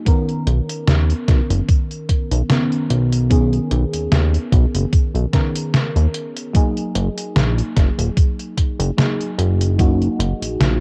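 Nostalgic and woozy, this vaporwave fragment drifts over a lightly swung groove, with a soft, round FM electric piano moving from Bmaj9 to F#6/9 at 6.5 seconds, its dark tone colored by phaser, subtle chorus, analog delay and cassette tape. A detuned 8-bit drum machine supplies hi-hat, a medium-tuned snare and tambourine, while a thumpy electronic kick sits loudest in the mix; both are tape-warmed and up front. A glossy, chorused synth bass built from pulse and sawtooth tones with a plucky filter enters at 0.5 seconds, and the dry home-cassette sound keeps it all intimate.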